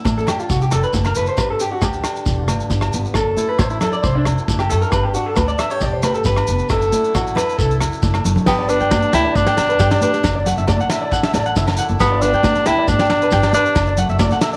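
Carefree, danceable highlife guitar band at 136 BPM in G major, where a twangy, slightly broken-up electric guitar with slapback echo plays a clean arpeggiated solo over a boxy, bright-stringed swing-picked acoustic guitar, woody pizzicato upright bass, a dark, smooth brush drum kit, hard-hand high-tuned congas, grainy shekere and dry agogo bells. The solo runs until a drum fill hands off at 8.5 seconds to an up-front, vintage jazz-style tenor saxophone melody with vibrato and slapback echo, while the band keeps playing beneath it, all in a small, lightly reverberant room.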